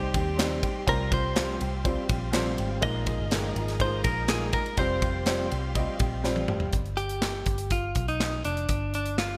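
Opening together, a clean, compressed electric guitar melody sits up front over a dark, woody upright piano with audible action noise, a round, foam-muted electric bass, a fingerpicked steel-string acoustic guitar riff with chorus, and soft, distant bowed strings with vibrato, while a punchy drum kit with bright cymbals, handclaps and gated reverb drives this earnest, bittersweet piano-driven pop excerpt at 123 BPM in bright 1980s-style digital production, until a drum fill at 6.2 seconds leads into a G chord at 6.7 seconds, and by 6.8 seconds the piano, acoustic guitar and strings have dropped away to leave electric guitar, bass and drums.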